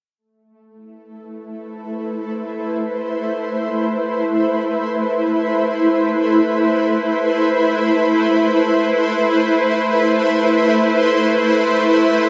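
A wet concert-hall reverb surrounds this short ambient fragment in free time and A minor, cut from a longer piece, where a single shimmering pad enters at 1.5 seconds and plays alone on an Amadd9 chord, ranging from A3 to C5. Its tone is ethereal and detuned, with an octave-up shimmer, granular texture, slow attack and long release, sitting bright and up front through chorus, built-in reverb and a diffuse ambient delay. The mood is serene yet melancholic, and the tuning rests at A4 = 439 Hz.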